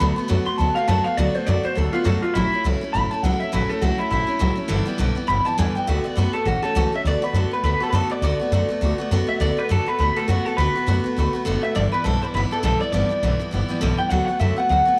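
Rockabilly with a rowdy, rollicking swing, led by a twangy, slightly broken-up electric guitar with subtle chorus and tape echo that takes a clean solo for the first 7.0 seconds over a full-bodied, up-front picked dreadnought acoustic and a woody, thumpy pizzicato upright bass on gut strings, all set in a small room with light reverb.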